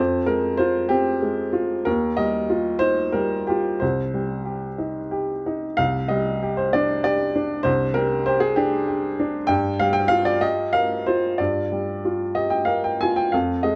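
A dark, lightly reverberant recording places a woody, vintage upright piano up front, its smooth tone fading quickly after each note. This intimate, reflective neoclassical minimalist fragment in C minor moves in a rubato 6/8 at about 59-66 BPM, the piano alone across its 13.8 seconds and ranging from deep bass to the upper register. The harmony drifts from Fm through Ebadd9 and Cm before the phrase repeats over Csus2 and settles on Gm7 at 9.5 seconds.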